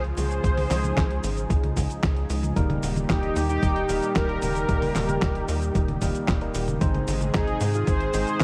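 A round, brassy synth lead, dark and detuned with a touch of ring modulation, carries the melody up front in this danceable, melodramatic italo disco fragment, riding chorus and tape echo over a smooth, slow-attack analog pad in the background. Underneath, a tight, punchy sequencer bass with a sawtooth filter pluck and tube saturation drives alongside a gritty, sampler-style soul kit of snare, hi-hat, toms, handclaps and cabasa, joined at 0.4 seconds by a thumpy electronic kick; both drum parts are compressed and re-recorded in a large room. From 2.6 seconds a barky, overdriven tine electric piano adds stabs through a combo amp, and the dry mix carries a layer of vinyl crackle.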